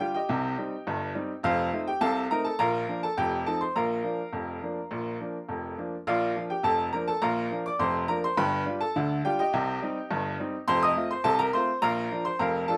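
A bright, woody upright piano plays solo throughout this cheerful, jaunty ragtime excerpt in Bb major at 104 BPM in a straight 2/4, sitting up front with long sustain in light reverb. Its tuning sits slightly low at A4 = 437 Hz, and it has a natural, brilliant ring across a span from F1 to Eb6 as a repeated section moves through changes such as Cm, F7, G7 and Bb.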